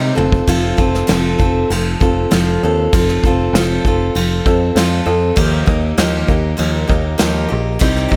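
Reflective and wistful, this short folk rock and heartland rock excerpt moves in a straight 4/4 over an F chord that shifts to Ebadd9 at 5.4 seconds. A bright, full-bodied steel-string acoustic guitar sits up front with fresh strings and audible finger squeak, joined by a growly, punchy electric bass played with a pick. A soft brush drum kit enters with a quick fill at 0.2 seconds, its medium-tuned snare, punchy kick, toms and crash cymbal sounding natural in a small room.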